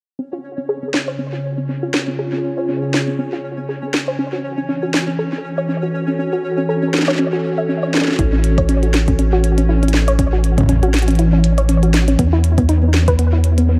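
A lightly swung sixteenth-note feel in 4/4 drives this wistful, playful IDM excerpt, cut from a longer piece. From 0.2 seconds a soft, round pluck spins dark arpeggios through chorus, vintage 12-bit sampler grit and analog delay, while a faint pulsing, tempo-synced texture of detuned unison triangle tones hovers beneath. A warbling, nostalgic tape-like pad with ring-modulated, lo-fi colour holds slow-attack chords, and both the pad and the pluck move through a long filter sweep across the whole passage. A glitchy kit of tiny snare and clicky hats enters at 0.9 seconds, overdriven and trailing dub echo. At 8.2 seconds a deep sine sub bass sits up front alongside a soft, overdriven electronic kick, all set in a moderate plate reverb within an echo-heavy mix.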